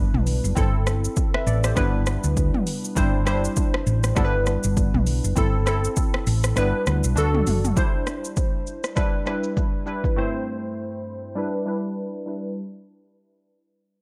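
Up front inside a low-pass-filtered digital ambience, this sunny, breezy afrobeats cut in G major moves at 100 BPM with a swung 16th feel: glassy, detuned, wave-folded digital keys with chorus chime over G6 and Am/G chords, a dark, round hollow-body electric bass drops out at 7.7 seconds, and an overdriven deep house kit of punchy kick, hi-hat, rim click, shaker and toms carries the groove until 10.2 seconds, while from 7.8 seconds the keys ride a filter sweep that continues through the closing break.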